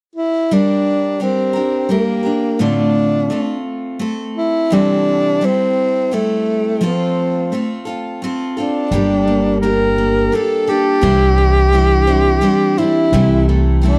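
In a straight three-beat metre, this wistful, intimate folk excerpt opens with a mellow tenor saxophone singing a classical-style solo with vibrato over a bright, full-bodied picked steel-string acoustic guitar, its finger squeak audible, until at 8.9 s a shimmering, octave-doubled twelve-string guitar adds picked arpeggios and a woody, thumpy pizzicato upright bass steps up front, the whole piece caught in a dry, close 1970s-style studio sound with moderate room ambience.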